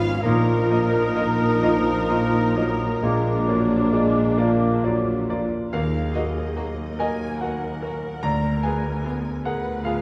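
Set in 12/8 with a free, rubato pulse, this brooding, passionate excerpt from a romantic movement for piano and orchestra unfolds slowly over a chord path that moves from Bbsus4 to Bb, then into Ebm and a darkening Ddim7 at 8.2 seconds. Up front, a clear, smooth grand piano with a vintage, short-sustain tone carries the melody across a broad range, shadowed in the background by a focused violin section with bowed vibrato. A second, more distant violin section, a roomy clarinet and an airy, hollow flute ensemble add second lines, while a lush, close viola section and a punchy, dark bassoon supply accompaniment. Low strings anchor the bass, with a very quiet cello section and a close double bass section joined by a soft-attack tuba that stops at 5.5 seconds. Brass colour the harmony: a very quiet, warm French horn section and a close-miked trombone section hold sustained chords, and a mellow trumpet adds stabs until 4.4 seconds. 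A wet scoring-stage reverb with a 2.0-second decay lends the ensemble a spacious depth.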